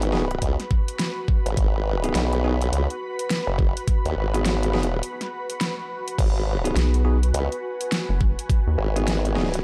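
A swung 104 BPM glitch hop groove in G# minor, gritty and swaggering, is built on an overdriven, knocking electronic kick that enters at 0.4 seconds and a dubstep kit with a huge, distorted snare, hi-hat and crash, with a short break at 5.0 seconds. An up-front, saturated formant-sweep wobble bass with chorus carries the low end, and a rubbery, nasal square bass pops in at 6.8 seconds. Clean, bell-like electric piano stabs with tape echo and sidechain pumping sit over an ethereal, airy pad with ensemble chorus, all within a dry, cassette-tinged hardware sound.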